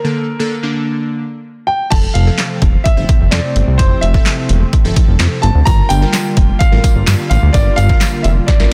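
A straight 4/4 dance-pop groove from a punchy analog drum machine, with kick, snare, handclaps, hi-hat and crash, drives this energetic clip from 1.9 s, joined by a fat, detuned sawtooth bass up front and a smooth, warbling vintage pad in the background, both with sidechain pumping. During the opening break, an intimate grand piano with audible action noise carries the melody through delay over glassy, airy digital keys with chorus and sidechain pumping, and both continue throughout. A jingly tambourine sits behind from 5.7 s, a drum fill closes the passage, and the mix is dry, dense and heavily limited.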